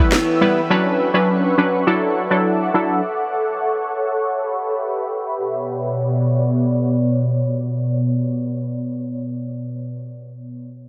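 Sultry and hypnotic, this short dancehall fragment in B minor at 103 BPM opens with a brief fingerpicked flamenco guitar arpeggio and punchy, brassy synth stabs with a filter sweep that stop at 3.0 s, while an ethereal, airy pad with slow attack and built-in reverb sustains chords from Em through Bmadd9, Dadd9 and F#m, all within a lightly reverberant, heavily compressed radio sound.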